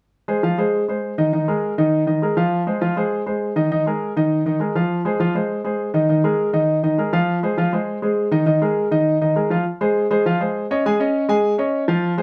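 A straight 4/4 pulse at a brisk 202 BPM drives this short Latin excerpt in F minor, giving it a danceable, driving feel. A grand piano carries the whole piece alone, playing from 0.3 to 12.2 seconds across a range from Eb3 to Ab5. Its tone is warm, present and polished, placed up front in the mix and touched with a slapback echo. The harmony alternates between Fm7 and Ebsus4 through the opening section, then shifts at 9.7 seconds to a second passage moving from Fm to Eb7sus4. A moderate studio reverb gives the piano a modest sense of room around its warm, present sound.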